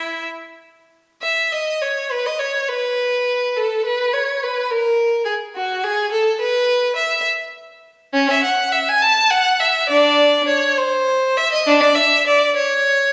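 Classical baroque-style suite movement for a single unaccompanied bowed violin in E major, cut from a longer piece, moving at a flowing, dance-like 69 BPM in dotted-quarter 6/8 with uneven, rubato beats, its rich, smooth vibrato tone spanning C#4 to A5 and set in a wet, resonant church or concert-hall acoustic.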